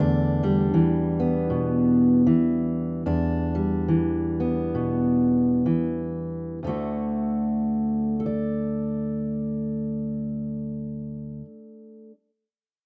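Swung eighth notes in an easy 4/4 pulse slow gradually over the first 6.6 seconds of this gentle, nostalgic folk passage, cut from a longer piece. A fingerpicked steel-string acoustic guitar with a full-bodied jumbo tone sits up front as the sole accompaniment, touched by a slapback echo, and settles from an Em7 chord onto D at 6.6 seconds. Light reverb and an open outdoor setting give the sound an airy, unenclosed feel.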